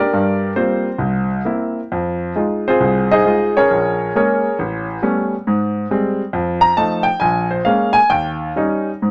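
A clear, natural-sounding grand piano plays alone and up front throughout this brief cut from a longer solo jazz piece, running from 0.0 to 9.1 seconds. The mood is playful and warm, set at 135 BPM in 4/4 with a swung eighth-note feel, uneven beats and a rubato looseness. The piano spans a broad range from A1 up to Bb5, and its notes have a short sustain that keeps the texture crisp. The harmony moves through jazzy seventh chords, from Gm7 and C7 through Fm7, Bbm7, A9 and Abmaj7, before F7, Bbm7 and Eb7 close the passage. A moderate studio reverb adds some space, and the top end of the recording is gently rounded off.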